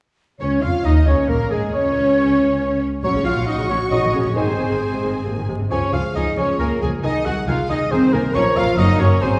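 Spirited and cheerful, this brief classical-period orchestral passage in triple time sets a focused violin section on the melody while an intense chamber violin section, clear clarinet, airy silver flute and oboe weave second lines above a mellow bassoon and lush viola accompaniment, a dark, distant French horn section holding sustained chords, and a smooth cello section joined by an up-front, expressive double bass section anchoring the bass, all heard from further back in a reverberant recital hall with vinyl crackle.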